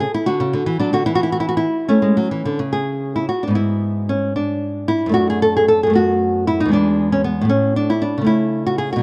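In a 6/8 at 76 beats per minute with a free, rubato feel, this serene and radiant baroque-style classical dance in A major, tuned slightly low to A4 = 435 Hz, is a brief cut from a longer piece in which a solo nylon-string guitar, fingerpicked, small and dark in tone and set up front with audible finger squeaks and light reverb, ranges from E2 to A4 and moves through a Dmaj9/C# and a rootless A before a repeated opening phrase at 3.6 seconds passes through E/G#, D/F# and E7 to settle on A/C#.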